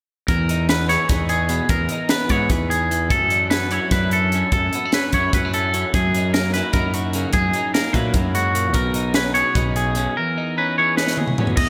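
Math rock and midwest emo in a wistful, intricate 7/8 at 298 BPM in E lydian, where a bright, twangy electric guitar spins up-front arpeggios through spring reverb and slapback echo over a clean, compressed twelve-string electric guitar, a growly fuzz-driven fingered bass and a crisp fusion kit with a high-tuned snare and punchy kick, moving from Emaj7 through Dmaj9/F#, F#13 and B69 to E6 before a drum fill at 11.0 seconds, all set in a lush hall with a big arena sound in this excerpt cut from a longer piece.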